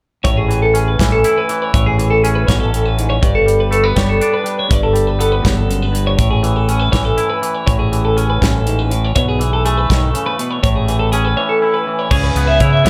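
A bright, clean twelve-string electric guitar sits up front, picking compressed arpeggios from G#4 to E5, with a touch of spring reverb. Beneath it, a twangy electric guitar plays fingered accompaniment with a warm, clean tone, while an overdriven fingered bass growls, round and up front. An acoustic studio drum kit recorded in a small room supplies kick, snare, hi-hat and crash, with a tight kick and a medium-tuned snare. This math rock and midwest emo excerpt moves at 81 BPM in a straight 6/8, with a wistful yet bright mood. The harmony drifts from Amaj7 to G and back, then passes through B9sus4 and Amaj9 before landing on C#m7 at 12.1 seconds, in a lightly reverberant space.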